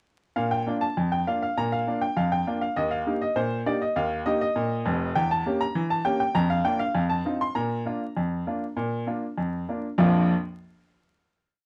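A clear, woody upright piano opens at 0.4 s with a playful, lively ragtime tune in Bb major at 100 BPM in a straight 2/4, setting a single-line melody over a stride bass. Heard up front in a moderate studio ambience, the vintage piano sits inside a worn, warbling old-tape sound with a cassette-tape character and vinyl crackle, its pitch drifting and wobbling. The short piece moves through Eb, a diminished chord and an F7 turnaround before settling on a final Bb chord at 10.0 s.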